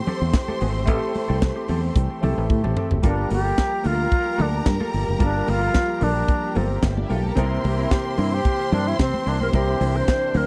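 This dry, close recording has the feel of a 1970s studio, with little reverb, and it is cut from a longer disco piece with a sultry, glamorous mood. A tight funk drum kit sits up front with a high-tuned snare, tight kick, hi-hat, toms and handclaps, joined by a fingered electric bass that is bright and foam-muted. Very quiet congas with thick, damped skins add soft hand percussion. In the background, a semi-hollow electric guitar plays clean, compressed accompaniment through spring reverb, and a concert grand piano offers natural tone with deep bass and long sustain. Two string sections fill the harmony: a lush symphonic ensemble with a biting, focused edge carries a second line, while a dark studio section plays soft-attack sul tasto sustained chords beneath it over Am7, Gm9 and C7. After a drum fill at 2.5 seconds, an airy alto flute with lifted highs and vibrato enters up front at 3.1 seconds and takes a tongued solo through to the end.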